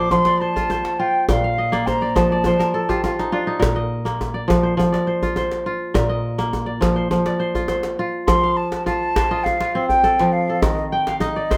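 Joyful and flowing, this excerpt of West African string and xylophone music moves at 103 BPM in a straight 4/4, centred on F mixolydian with chords shifting between F and Bb before an Ebmaj13 near the close. Crisp, ringing fingerpicked kora arpeggios sit up front throughout and add fills along the way, while a tight, cracking djembe struck with hard hands and carrying metal rattles keeps time in a live room. A pure, mellow wooden flute with vibrato and a soft attack sounds distant in its plate reverb, carrying the melody at the opening and returning at 8.3 s.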